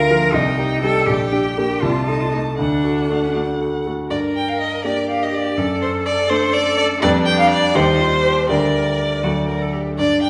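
A rich, up-front violin carries the melody with expressive vibrato and portamento, a slightly distant bowed line over a cello that sings a second voice with soft attacks and the same sliding expressiveness. Beneath them, a smooth, vintage-toned grand piano supplies the accompaniment in this quick, dramatic and restless classical-period trio movement in G minor, set in 6/8 at 81 BPM in dotted quarters. All three play throughout this short cut from a longer piece, with a new section arriving at 4.1 seconds, and the sound blooms in the reverberant space of a church or concert hall.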